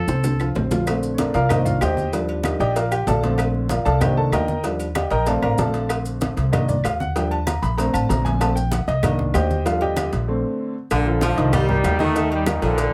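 Danceable and sunny, this salsa excerpt in Bb major at 191 BPM opens with a brief trumpet note over a drum fill before a clear, intimate upright piano with audible action noise takes a solo from 0.9 s over a woody, growly pizzicato upright bass, background congas, bongos and cowbell, timbales and agogo bells, claves and grainy maracas, until a bright, punchy trombone section with tape echo and an edgy baritone saxophone enter at 10.9 s, all in light reverb.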